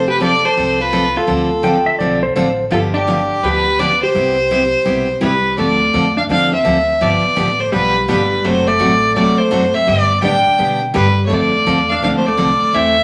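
A clear, earthy fiddle carries the melody from the first beat in this playful, down-home western swing excerpt, bowed by a single player with light vibrato and sitting up front, though with a slightly distant quality. Around it, a dark, clean hollow-body jazz guitar picks a compressed second line while a bright, full-bodied steel-string acoustic guitar picks the accompaniment, and a woody, thumpy upright bass with gut strings plucks the low end. The tempo is a lively 168 BPM in 4/4 with a moderate swing on the eighth notes. At 1.6 seconds a clean lap steel guitar slides in up front for a brief second line with volume swells, gone again by 2.6 seconds. The harmony moves through jazzy changes such as F6, Dm7, G7 and Cmaj7, shifting into a new section at 5.6 seconds that passes through D7/F# and G. A large studio reverb gives the whole band a roomy, wet sheen.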